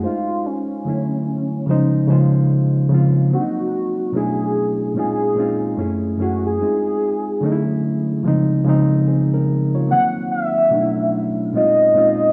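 A slow 73 BPM pulse in 4/4 carries a loose, swung sixteenth-note feel, giving this sultry, introspective R&B fragment a lazy, unhurried sway. A reedy electric piano, lightly overdriven and heard through its built-in speakers, sits up front as the accompaniment from the opening second to 12.3 s, spanning a broad range from the low register up into the middle. Over it, a velvety synth lead carries the melody, blending detuned sawtooth and triangle tones with a wave-folded edge, a soft attack, sustained notes, chorus and vibrato. The harmony drifts through rich extended chords such as Fm7, Dmaj9, Dbmaj9, Cm7b5 and Bm11, with a second section arriving at 9.9 s that returns to the Cm7b5, Bm11 and Bbm11 turn. A moderate plate reverb and studio ambience lend the sound a lingering sense of space, and the passage is cut from a longer piece.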